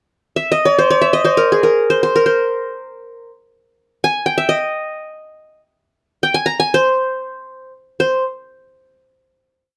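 In free time, this short, stately Arabic maqam piece in C maqam saba features a solo acoustic qanun, plectrum-plucked with bright-edged triple strings and placed up front, unfolding an ornamented modal melody from 0.4 seconds. Close, detailed microphones and light reverb frame the performance before it arrives at a final note at 8.0 seconds.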